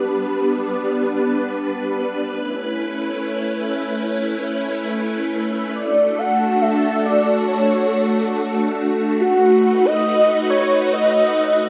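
IDM in free time and G lydian, this wistful, glitchy excerpt opens with a silky vintage string machine holding slow-attack chords through phaser and ensemble chorus, moving from G to Aadd9, Dmaj7 and B7, before a velvety, detuned synth lead with vibrato, chorus and digital delay enters at 5.8 seconds to carry a mellow melody, all bathed in a lush hall reverb.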